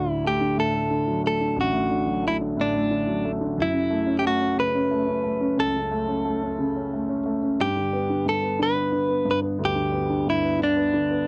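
This is a dry, close recording in a 1970s studio style, with a moderate booth ambience that keeps both instruments up front. It is a heartfelt, swaying pop ballad in six-eight, cut from a longer piece. A clean, direct-recorded electric guitar carries the melody from the start, its picked notes compressed and scooped, sitting in a compact range from D4 to B4. Beneath it, a polished, present grand piano supplies the accompaniment, spanning from deep A1 up to C#4 and giving the arrangement a warm foundation. The harmony moves from D to F#m at 3.6 seconds and arrives on G at 7.6 seconds, with both instruments playing together throughout the 11.3 seconds.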